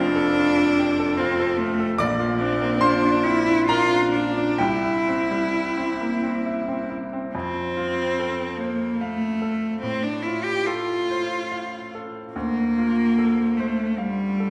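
In a gently flexible triple metre with generous rubato, this short romantic classical passage for cello and piano unfolds in a serene, lyrical mood. A single bowed cello carries the melody from G3 to G4, its focused tone sung with expressive vibrato and placed up front. Beneath it, a baby grand piano provides accompaniment across a broad span from F1 to F6, its brilliant, natural sound ringing with long sustain. Both instruments play together throughout the roughly 14.5 seconds, which fall into two phrases, the second beginning at 7.3 s. The harmony moves from F through Bb and C, then returns to F before passing through F/A and settling on Dm7. A reverberant recital hall surrounds the duo, lending the performance an airy, spacious glow.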